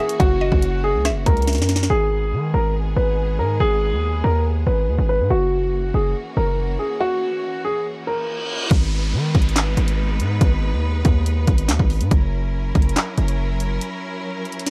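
Dark and ominous, this half-time drill cut in G# minor at 141 BPM opens with a mellow, worn baby grand melody over distant, lush bowed strings. A woody mallet-like pluck with chorus and delay sits in the background, while a saturated, heavy 808 bass and an up-front drum kit with a hard-clipped kick, sharp snare and bright hats drive the track under F#7 and G#m chords. After a break around 7.0 seconds, a reverse cymbal and downlifter lead the drums back in at 8.7 seconds, where the piano drops out and the strings and bass carry on.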